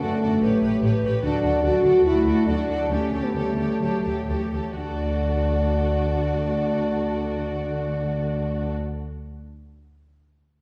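Up-front French horns hold warm sustained chords over a bowed, vibrato-rich string body (a focused violin melody in the background, a lush second violin line, a distant viola accompaniment, a close, smooth cello bass and a rich double bass) in this restless, dramatic romantic orchestral excerpt in D major at 119-149 BPM, which slows from 0.4 to 4.8 seconds within a reverberant concert-hall sound.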